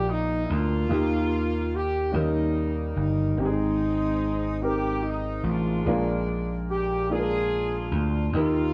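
A breathy, intimate alto saxophone with scooped notes carries the melody from the opening moment, together with a distant, roomy horn section, a woody upright piano with long sustain and a punchy, up-front electric slap bass, in this reverent, hopeful gospel excerpt at a slow 48 BPM in 6/8 that moves through Bb, Eb, Eb7, Ab and Bb7 with the band playing live in a stone room.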